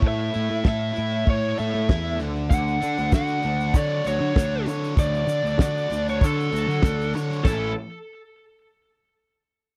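This wistful yet upbeat indie rock excerpt opens with a soft brush drum kit, a fuzz-laden picked electric bass and a double-tracked overdriven electric guitar riff, all starting together at a straight 97 BPM in 4/4 and A major. The drums sit up front with a dark, rolled-off top, a fat snare and a punchy kick, while the bass is also up front, its direct-and-amped tone thick with fuzz. A bright, biting lead guitar carries the melody almost at once, overdriven and coloured by tape echo, riding above the picked, bright riff guitar. The harmony moves from A to Dmaj7 at 2.2 seconds, and a grainy tube shaker slips in at 2.5 seconds, tucked in the background. The dry, close 1970s-style studio sound has little reverb, and the chords return to A at 7.5 seconds as a new section begins.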